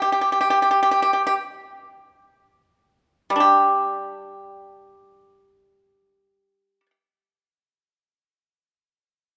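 In a free, rubato 4/4 at a slow 33-40 BPM that eases down over the first 3.4 seconds, this flowing, serene fragment of traditional Chinese solo music features a bright, percussive acoustic pipa played with fingerpicks, sitting dry and up front between G3 and G4 until it stops at 6.9 seconds, set in a moderate concert hall reverb.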